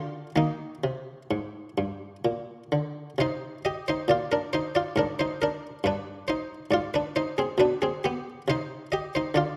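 Solemn and grave, this fragment of a baroque-style suite movement for solo harpsichord unfolds in a measured triple metre with a freely breathing rubato. The instrument is played with its buff stop engaged, giving a muted, lute-like pluck in the Italian style that sounds full. Close, detailed microphones place the harpsichord up front, while a recital hall's reverb blooms around it and lends the sombre phrases a sense of space. The harpsichord plays alone from 0.0 to 9.6 seconds, and its opening phrase is restated from 3.2 seconds as the harmony darkens.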